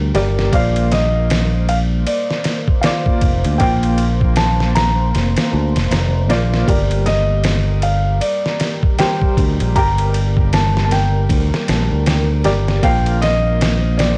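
Trip hop in G minor at 78 BPM, this cinematic, dark excerpt moves with a 16th-note swing and a dry, gritty character dusted with vinyl crackle. A felt-muted upright piano carries the melody in a soft, mellow voice, its thick-felt tone trailed by tape echo, while a second upright piano supplies woody accompaniment with audible action noise and a tremolo shimmer. Beneath them, a deep ambient pad holds sustained chords in the background, its detuned sawtooth and sub-octave layers given chorus and built-in reverb. Up front, a bright fingered electric bass sits low and direct, joined from 0.1 seconds by a sampler-style drum kit of thumpy kick, medium-tuned snare and ride cymbal, compressed and pitched down for a tape-warm grit. The harmony moves between Gm and Bbadd9, returning to Gm at 6.7 seconds before settling on Bbsus2 at 12.8 seconds.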